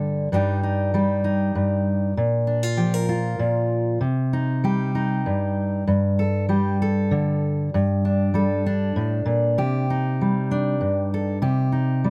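A lone fingerpicked steel-string acoustic guitar opens the clip, its dark, full-bodied jumbo tone placed up front with audible finger squeaks, playing a melancholic, reflective folk piece in 3/4 at 97 BPM. The chords move from Ebmaj7/G through Bb, Cm and Gsus2 to Gmadd9 before a new section begins at 9.6 seconds on Cmadd9, heard only briefly since this is cut from a longer piece. The close, detailed recording carries little reverb and a faint mains hum beneath the guitar.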